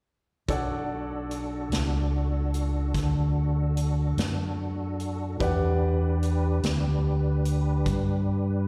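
A slow 12/8 blues at 49 BPM in B minor, soulful and mournful, moves from Bm7 to Em7 as a round, up-front fingered electric bass anchors the low end, a tonewheel organ holds clean sustained chords with key click, chorus vibrato and a slow rotary speaker, a woody, boxy upright piano with audible action noise accompanies through slapback echo, and a natural kit with a punchy kick and medium-tuned snare plays until 8.1 seconds, all heard as a live gig through the venue's PA in small-room ambience with recital-hall reverb, cut from a longer piece.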